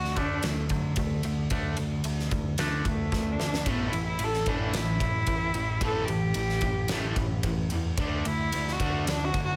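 Light reverb and a small-room ambience frame this dark, cathartic slice of quiet-loud alternative rock, where a nasal, boxy bowed cello carries the melody up front throughout, its smooth vibrato touched with slapback echo. A huge arena drum kit with a fat snare and punchy kick drives up front alongside a growling, overdriven picked bass and a sludgy guitar riff in the background, while a twangy clean guitar with phaser plays arpeggios until 3.6 seconds. After a drum fill at 3.1 seconds, a bright, scooped distorted guitar joins the riff in the background from 3.7 seconds.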